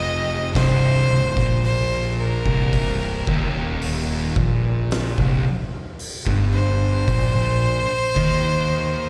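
Stoner and doom metal with a heavy, hypnotic mood, this short excerpt sets a biting, airy-bowed fiddle up front with light vibrato and slapback and digital delay, singing over two dark, picked fuzz guitars, one very quiet and one in the background with distortion and slapback echo, plus a growly, overdriven fingered electric bass. An oversized low-tuned drum kit with a fat snare and punchy kick, gritty and saturated in a pumping stone room, enters at 0.6 seconds and drops out at 8.4 seconds. The harmony sits on C minor before shifting to a rootless Abadd9 at 7.1 seconds, all heard as a live gig through the venue's PA with recital hall reverb.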